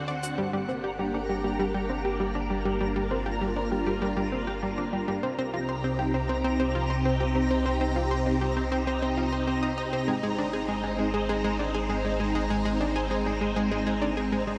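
A swirling, vintage string machine opens at 0.0 s, holding sustained chords through ensemble chorus, a phaser and shimmer reverb, while a twinkling granular texture sparkles high above with an octave-up shimmer and long release. An analog pluck enters almost at once with a round, bright riff, its fast attack and short decay carried on chorus and tape echo, sitting up front beside the strings. From 0.4 s a deep sine sub bass adds a mellow, sustained foundation. This hypnotic, expansive ambient piece moves at 99 BPM in a straight 4/4 in G phrygian, with the harmony shifting from Gm to Cm at 5.2 s and to Ab at 10.1 s. A huge, wet reverb with an 8.6-second decay surrounds the whole mix, and the passage is cut from a longer piece.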